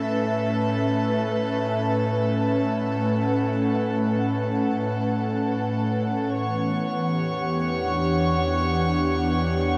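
A vast, wet reverb with an 8.5-second tail surrounds this short ambient excerpt in free time, set in E dorian with a serene, melancholic mood. Up front, a breathy, detuned pad carries sustained chords with slow attacks and long releases, its chorus adding a gentle shimmer over a soft noise layer. Behind it, a distant chamber violin section adds a warm, nasal, reedy, gut-string texture in period style, bowed throughout. The harmony moves from Aadd9 to Em7 at 6.3 seconds, and at 7.6 seconds a deep, rumbling drone enters on a low E, dark and ominous with its own built-in reverb.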